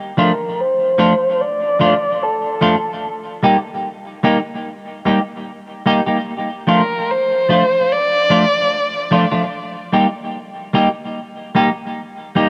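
Heavy and meditative, this reggae fragment, cut from a longer piece, moves at an unhurried straight pace in four. A bowed solo violin carries the melody up front and close, its expressive line shaped by vibrato and portamento, softened by a low-pass filter and trailed by tape echo. Beside it, a clean, picked semi-hollow electric guitar supplies the accompaniment with a scooped, hollow-body tone, bathed in lush chorus and tape echo. The harmony rocks between Dm and Eb, and after the violin falls silent at 9.1 seconds the guitar carries on alone until 12.5 seconds. A moderate plate reverb gives the pair a long tail.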